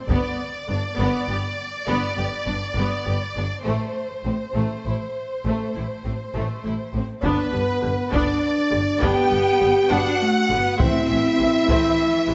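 A dark, relentless stretch of epic orchestral film score opens with a brief hit from the taiko ensemble, played with heavy sticks in a small room, under a dark, expressive violin section that carries the melody with lush vibrato. Around it, a clear second violin line sits distant in the background, warm violas supply focused accompaniment, and rich, smooth cellos and double basses hold the low end at a slow 67 BPM in a rolling 12/8 over G and A minor harmony. The opening builds until 7.2 seconds, when the taiko returns and a distant, roomy French horn section enters with somber sustained chords, joined by a very quiet, airy flute line with a crisp attack. Near 10.8 seconds the timpani comes in, very quiet and articulate under hard mallets, as the harmony moves to A minor. The whole passage sits in a moderate scoring-stage reverb with a rounded top end, and it is cut from a longer piece.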